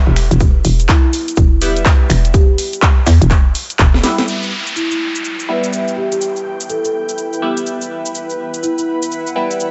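A gritty, aggressive bass house cut in E minor at 124 BPM, with a light digital ambience and a dark top end. A punchy, overdriven kick sits up front with a hollow, knocking FM bass that bounces under the Em chord until 4.0 seconds. Around them play a layered house kit with finger snaps, handclaps, hi-hat, shaker and a cracking snare, a very quiet acoustic shaker and fat snare, and nasal, band-passed sawtooth stabs carrying phaser, chorus, 12-bit grit and delay, while a woody soft-mallet marimba melody floats through with delay; after a drum fill, an electronic downlifter enters at 4.3 seconds and a cloudy, blurred granular pad blooms in at 5.7 seconds.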